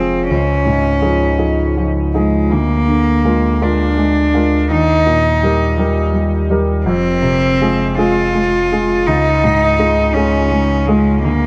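Set in 6/8 at 55 BPM counted in dotted quarters, this neoclassical piano and strings passage moves with a loose, rubato feel, its tuning sitting at A4 = 444 Hz. The mood is fragile and melancholic, carried through a chord progression that begins on Dbadd9, passes through Bb7/D, Eb and Fm, and returns to Dbadd9 at 9.1 seconds. A single bowed cello sings the second line between Ab3 and F4, its sul tasto tone rich, pure and floating with a soft attack, placed up front. A vintage-sounding grand piano, smooth and close, supplies the accompaniment across a span from Db2 to Bb4. Beneath them, a sine sub bass holds deep, clean, dark sustained notes from F1 to Eb2, and a huge ambient reverb with a 4.0-second decay surrounds the whole 11.5-second extract, which is cut from a longer piece.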